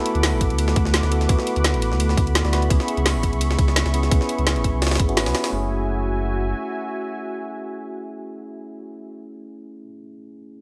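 A straight 4/4 liquid drum and bass groove drives this melancholic, dreamy passage, cut from a longer piece. It is built from layered drums: an overdriven, tight electronic kick, a produced kit with a woody snare and bright hats re-recorded in a small room, and a compressed, pitched-up jungle sampler kit. That jungle kit sits in the background with a gritty, high-tuned snare, and a high-pass filter thins its ride, hats and snare. Beneath them, a deep, full sine sub bass with an added octave sits up front, with a fast attack and sustained notes. A clean tine electric piano carries the accompaniment as if through built-in speakers, coloured by vintage 12-bit sampler texture, a low-pass filter, dub echo and a filter sweep over its opening. Meanwhile a smooth, detuned sawtooth pad with chorus, a soft attack and a long release holds chords moving from D6 to C#m7 to F#m9. The kick stops at 5.1 seconds, the other drums at 5.5 and the bass at 6.5, leaving the keys drifting in light reverb until the piano stops at 10.6 seconds.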